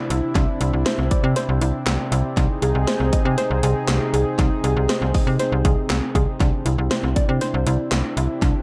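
A straight 4/4 house drum kit at 119 BPM drives this upbeat, bright synth-pop clip in C major, its punchy kick, cracking snare, hi-hat and handclaps sounding up front with tape echo and the air of a large room, while a snappy, metallic slap-like FM bass carries the low end. Behind them, a smooth analog pad with a sub octave and chorus holds slow-blooming chords, moving from Cadd9 to Ab/C at 2.4 seconds and back at 6.4 seconds. A soft, round, detuned pluck with chorus and tape echo sits darker in the background, tracing arpeggios through an echo-heavy mix bathed in moderate spring reverb.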